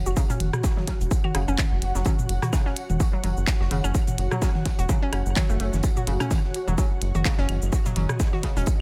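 A rubbery, dark square bass and an ethereal, airy pad with ensemble chorus, phaser and built-in reverb open this cut from a clinical, cool minimal techno track at 127 BPM, both carrying sidechain pumping, while an overdriven, punchy electronic kick sits up front alongside the bass. A hollow, detuned square pluck plays the riff through chorus, phaser, vintage 12-bit sampler grit and analog delay. Filling out the swung 16th-note groove are a clicky kit of handclaps, hi-hat and shaker with dub echo, a booming analog drum machine of claves, rim click and toms with tape echo, and a dry acoustic reggae kit of hi-hat, high-tuned snare and tambourine in the background, all in an echo-heavy mix with little reverb.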